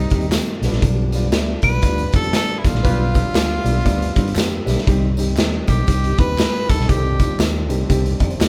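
Swung eighths drive this uptempo 1960s-style soul excerpt at 119 BPM in 4/4, with a punchy, saturated garage drum kit up front, a round, foam-muted electric bass, and handclaps and tambourine tucked in the background. An edgy, forceful tenor saxophone carries the melody in G mixolydian over Cm and G7 changes, while a dark, slightly detuned upright piano and a very quiet overdriven tonewheel organ with slow rotary speaker hold the accompaniment. A bright saxophone section joins briefly at 2.8 seconds for a band accent, and the piano adds a fill at 4.1 seconds, all captured live in one room with light reverb and an uplifting mood.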